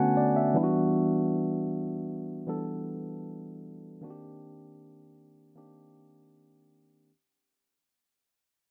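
Moody and sensual, this brief R&B fragment, cut from a longer piece, moves at an unhurried 78 BPM in a straight 4/4. A solo tine electric piano carries the whole passage, its mellow, clean tone sitting up front and direct in the mix, spanning D3 to A5. It opens with a short fill across the first 0.9 seconds as the extended chords move from Bm9 to Em9, then shifts to Cm9 at 4.0 seconds. A light reverb gives the sound a soft sense of space. The passage fades out across its full 7.1 seconds.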